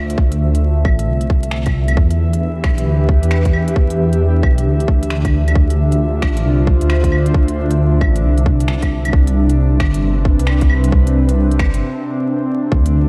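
A tight, overdriven kick sits up front in this melancholic, rainy future garage piece, beside a deep, rumbling detuned saw bass that pumps against it, while an airy, breathy pad with chorus and 12-bit sampler grit sustains Dm9, Em7 and Cmaj7 chords, crisp overdriven hi-hats, claves and finger snaps swing quietly underneath, and after a short break from 11.8 seconds, a reversed, dreamy swelling texture barely surfaces at 12.7 seconds, all wrapped in light digital ambience and vinyl crackle.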